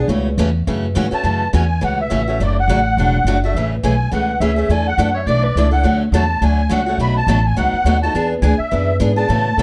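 Charming and lively, this acoustic string swing (jazz manouche) cut moves at a brisk 209 BPM in A major, its eighth notes swung. A bright, boxy parlour steel-string guitar is picked up front for the accompaniment, finger squeaks audible. Beside it sits a woody, thumpy pizzicato upright bass on gut strings. The reedy musette accordion, with its shimmering wet tuning, carries the melody from 1.1 s, mid-forward and close. A mellow, distant soprano saxophone with vibrato, soft attacks and scooped notes adds a short jazz-style second line at 5.1 s, coloured by tape echo and a roomy feel. The harmony moves from A6 through F#m7, Dmaj7/F#, Amaj7, E9sus4, Dmaj7 and B7 to E7, all set in a dark production with moderate studio reverb.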